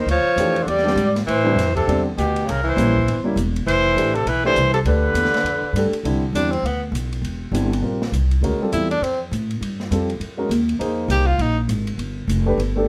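Small-group swing and bop jazz at a brisk 202 BPM in C major, with a warm, swinging feel: a mellow, roomy trumpet with light vibrato and scooped notes carries the melody over a bright, soft-attacked tenor saxophone second line until the trumpet drops out at 5.9 seconds, after which the saxophone takes a solo from 6.1 seconds. Underneath, a woody pizzicato upright bass sits up front, a natural-sounding grand piano comps rich extended chords, and a small-room drum kit adds dark cymbals and a boomy kick, all under light reverb.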